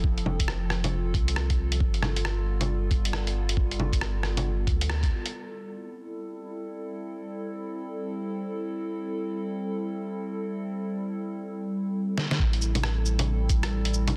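A warbling, detuned tape-like pad sits up front throughout this ghostly, wistful future garage piece at 136 BPM in A minor, its mellow, slow-attack chords moving from F through G9 to Am7 under chorus, phaser, built-in reverb and sidechain pumping, while a round, soft dub sub bass with tube saturation, a muffled, thumpy electronic kick and a lo-fi sampler-style kit of hi-hat, fat soft-clipped snare, rim click, bongos and cabasa ride a swung 16th feel, with the kick and bass dropping out at 5.1 seconds and the kit shortly after to leave the pad alone until the kit returns with a fill at 12.2 seconds and the kick and bass rejoin at 12.4 seconds.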